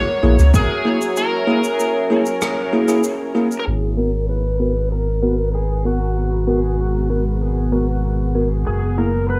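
A dark, detuned ambient pad and an overdriven slide guitar carrying the melody through dub echo open this hazy, spacious ambient dub excerpt at 96 BPM in G# minor, joined at once by bell-like tine electric piano stabs and a round, up-front sub bass with tube saturation. A brief deep electronic kick with distortion and room reverb lands at 0.5 s, while cabasa and rim click sit back in a natural hall until 3.6 s. A break gives way at 3.7 s to a filter sweep as the harmony moves from F#7 to G#m7 and back to F#7.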